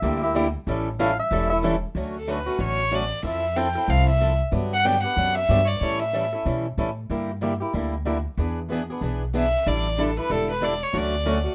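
Set in a light reverb, this short cut from a longer piece of acoustic string swing in the jazz manouche style has a playful, charming mood, moving at a brisk 187 BPM in 4/4 with a swung eighth-note feel in D major. It opens with a breathy clarinet taking a brief solo up front, its clear tone carrying light vibrato and scooped notes in a jazz style before it drops out at 1.6 seconds. Underneath, a bright, boxy picked swing guitar drives the accompaniment throughout, joined by a thumpy, woody upright bass played pizzicato on gut strings, dark and close to the listener. A second picked steel-string parlour guitar, plugged in and sitting in the background, adds mellow support at the start and returns at 7.1 seconds. The violin carries the melody from 2.2 to 6.3 seconds and again from 9.4 seconds, intimate and airy, bowed sul tasto with a soft attack and light vibrato over chords that move through Dmaj7, Fmaj7, Gmaj7, A7, Gm6, E7 and A7sus4 before resolving back to Dmaj7.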